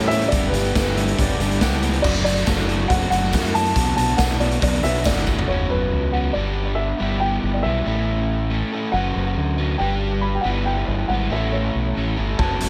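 A dark, woody upright piano carries the melody from the start over two overdriven, picked guitar riffs (one crunchy and chorused, the other touched with spring reverb) and a round, punchy fingered bass, setting a wistful, jangly indie rock mood in this excerpt cut from a longer piece. A raw, gritty garage drum kit sits up front with a very quiet jingly tambourine, while a bell-like tine electric piano adds a brief bright line in the background near 1.0 seconds. The drums end their first stretch with a fill at 5.3 seconds and drop out as the chords shift to a suspended passage, returning only at 12.4 seconds in a dry but echo-heavy mix.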